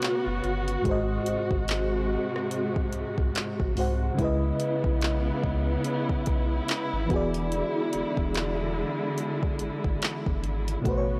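A slow 72 BPM groove in 4/4 with swung sixteenths drives this moody, late-night contemporary R&B excerpt, its electronic drum kit of soft kick, handclaps, hi-hat and rim click sitting up front with overdriven grit. A mellow FM electric piano with tremolo and a noise layer moves through A69, G#7, C#m7 and E7 beside a bowed studio string section, expressive with vibrato and portamento and carrying sidechain pumping, while a round sine sub bass enters at 0.3 s. Digital ambience frames the dry, gritty hardware sound.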